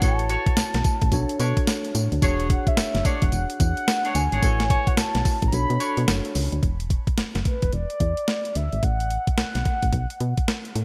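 Punchy and confident, this excerpt from a longer new jack swing R&B piece moves at 109 BPM in 4/4, with a 62% swing on the sixteenths. A clean 12-bit drum machine sits up front with a thumpy kick, a medium-tuned snare, hi-hat and tambourine, all carrying a tape-tinged, sampler-style character and gated reverb, while a solid FM bass adds a dark, round low end with fast-attack, decaying notes. Over A6, Bm9 and E13 chords, a horn-like sawtooth synth lead carries the melody with a soft attack, sustained tones, vibrato, a filter sweep, chorus and delay. A clean tine electric piano played through a combo amp, colored by tube saturation and phaser, plays alongside tight, vintage jazz-style horn stabs with light vibrato, until the horns stop at 6.0 seconds and the piano at 6.7 seconds. The kick drops out from 5.5 to 6.6 seconds before a second section shifts to E7(no3), F#madd11/A and B7(no3), all framed by light reverb in a bright 1980s-style digital production.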